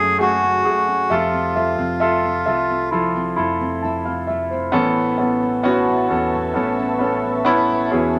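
Hopeful and heartfelt, this short pop ballad fragment moves at a slow 66 BPM in a straight 4/4, cut from a longer piece. A reedy, breathy melodica carries the melody up front for the opening moments, stopping at 2.9 seconds, while a polished grand piano holds the accompaniment close and present throughout. Beneath it, a dark nylon-string guitar fingerpicks classical-style arpeggios, and a round, punchy fingered electric bass anchors the low end. At 5.4 seconds a glassy, ethereal FM pad enters with slow-attack sustained chords, softened by ensemble chorus and its own reverb. The harmony drifts from F#madd9 to Fmaj7 and settles on Aadd9, all set in a moderate studio room.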